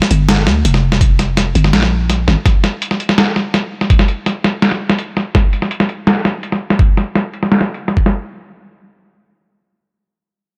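A half-time drum and bass groove carries this cinematic, spacious excerpt, built on a gritty, overdriven boom bap sampler-style kit of hi-hat and medium-tuned snare that sits up front under low-pass filtering and a filter sweep across its full length. A growling, buzzy 808-style bass with a fast attack and decaying tail sounds only from 0.1 to 2.4 seconds, and a thumpy, compressed electronic kick drum joins at 1.0 seconds with its own overdrive and small-room character. Light reverb gives the mix a sense of space.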